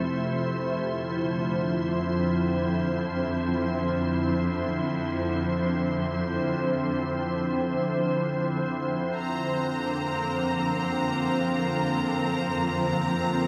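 A wet plate reverb with a 2.5-second decay surrounds this serene, peaceful ambient fragment, cut from a longer piece and drifting in free time. An organ-like pad, pure and bright with a slow attack, long release, ensemble chorus and its own built-in reverb, sits up front holding chords between C3 and C5, moving from Fmaj7 to Dm9/F at 0.9 seconds. Beneath it, a rich, lush cello section, bowed close with vibrato, anchors the bass on F2 throughout. At 9.2 seconds a clear, smooth violin section enters up front on a high Bb5 with light vibrato, just after the harmony settles onto Bbadd9/F. The tuning rests at A4 = 439 Hz, and the whole passage holds a calm, unhurried stillness.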